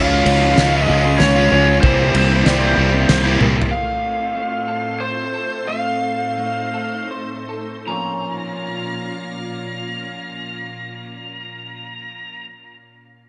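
A melancholic, brooding post-rock passage in 3/4, cut from a longer piece, opens with most of the band at once. An up-front overdriven slide guitar carries the melody over a growly fuzz bass, two background guitars playing crunchy and bright distorted riffs, and a mellow felt-muted upright piano whose arpeggios come through with audible action noise and analog delay. A loose indie drum kit, with a fat snare, punchy kick and dark cymbals in a pumping studio room, joins almost immediately, alongside a soft organ-like pad of pure, detuned sustained chords with ensemble chorus. The tempo moves between 75 and 96 BPM, and a drum fill at 3.4 s closes the opening. At 3.7 s the key settles into Bb harmonic minor and the drums, bass, piano and riff guitars drop away, leaving the slide guitar, the pad and a slightly broken-up electric guitar through a small old amp picking delayed arpeggios as the music slows down until 7.9 s. 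The final stretch rests on a Bb minor chord, with light reverb and a softened top end.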